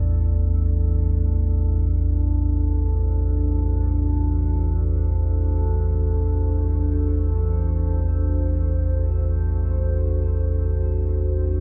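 Unsettling and cavernous, this dark ambient drone piece drifts in free time in A dorian, resting on a single A minor chord for the whole of its 11.6 seconds. Up front sits a deep, rumbling drone low in the register, its ominous, nasal tone carrying a ring-modulated edge, a slow attack and a long release, with lush chorus and its own built-in reverb. Above it, a dark analog pad holds sustained chords in a middle register, sitting well behind the drone in level. The pad's moody, detuned voice is wave-folded and thickened by a sub octave, swelling in gently through its slow attack and trailing off through a long release, with a lush chorus shimmering across it. The whole passage is washed in a wet cathedral reverb with a long, echoing tail, and it is a fragment cut from a longer piece.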